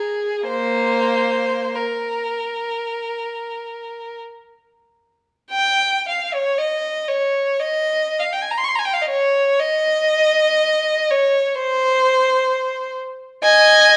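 This classical passage for unaccompanied violin is yearning and mournful, unfolding freely in rubato with an expressive line taken from a longer work. A single bowed violin plays alone throughout the 14.0 seconds, its rich, smooth tone carrying steady vibrato as it ranges from Bb3 up to Db6. The instrument sits up front in a recital hall whose moderate reverb adds a gentle glow around each phrase.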